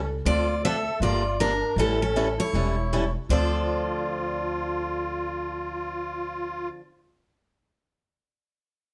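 Swinging and bittersweet, this short cut of acoustic string swing in D minor moves at 158 BPM with a bright, full-bodied picked steel-string guitar carrying the melody up front, complete with finger squeak, over a shimmering, reedy musette accordion second line, a woody, thumpy pizzicato upright bass, and a boxy swing-style picked guitar that joins at 0.3 seconds to comp through Dm7, Gm7 and A7, all set in a moderate studio reverb.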